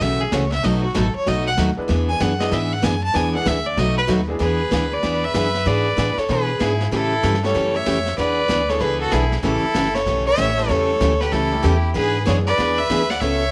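A swinging 4/4 pulse at 191 BPM drives this playful western swing excerpt in E mixolydian, with the eighth notes given a loose shuffle. A vintage brush drum kit sits in the background, its brushed snare, hi-hat and punchy kick sounding mellow and rolled-off on top, while a woody, thumpy pizzicato upright bass holds down the low end. A bright, picked steel-string acoustic guitar and an intimate upright piano, brilliant in tone with audible action noise and long sustain, fill out the accompaniment behind the changes from F#m7 and B7 to E7 and A7. Up front, a clear, earthy fiddle with light vibrato carries the melody, taking a solo through the opening 4.4 seconds. From 4.4 s a second bowed fiddle, smooth, even and close, adds a lower supporting line, and light studio reverb gives the small band a cozy sense of room.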